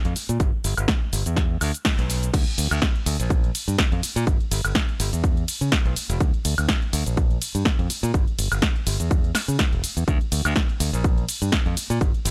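Feel-good and sunny, this short cut from a longer filtered disco house track rides a swung 124 BPM groove in 4/4, with a punchy analog drum machine of crash, hi-hat, ride, shaker, snare and woodblock pumping to the sidechain beneath a layered, tape-warm electronic kick that arrives at 0.4 seconds. A bright, fingered electric bass, direct and up front, spans E1 to C#3 through transformer saturation, a low-pass filter and sidechain pumping. After a band accent at 1.9 seconds, the drop lands at 2.3 seconds and carries to the end, all in a dry, gritty hardware sound with little reverb.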